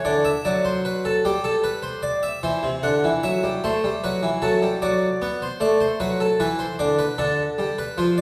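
A solo French-style harpsichord opens on a D7 chord in this solemn yet driving baroque-style two-part invention, moving in 6/8 at 50 BPM in dotted quarters and reaching from C3 to F#5. Its plucked, brilliant tone with ringing octave strings sits close and full at the front, while a recital-hall reverb of 1.4 seconds surrounds it. The brief passage, cut from a longer piece, shifts into a new section at 2.4 seconds, where the harmony moves through C, Am, D/F#, Bm and Dm.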